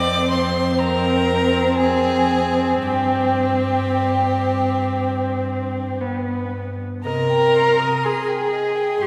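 The viola stands up front in this solemn, elegiac slow movement for string quartet, its warm, airy sul tasto tone carrying the accompaniment throughout the 9.1-second fragment. Above it, one violin sings the melody with a dark, smooth-topped sound, while the second violin traces a gentle second line with a breathy bow, and a shadowy cello holds the bass beneath. All four players bow with soft attacks and light vibrato, giving an intimate, close feel that is bathed in a deep church reverb lasting around 2.5 seconds. The music moves at 56-63 BPM in 4/4 with a rubato sway, in C minor, tuned to A4 = 442 Hz. The harmony passes from Fm through Gsus4 and G before arriving on Cm at 7.0 seconds, where a new section begins.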